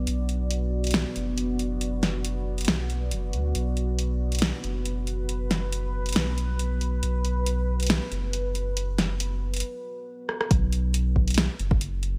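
Brooding and heavy, this deep dubstep excerpt moves in a swung half-time feel, with a moody, warbling vintage pad of sustained chords, washed in chorus and its own reverb, over a thick, saturated sub bass. A fat-snared drum kit of hi-hat, rim click and snare sits up front with a tape-warm, small-room character. The build-up breaks at 9.6 seconds and a drum fill lands at 10.3, then at the 10.5-second drop the pad stops and a deep electronic kick punches in beside the bass and kit.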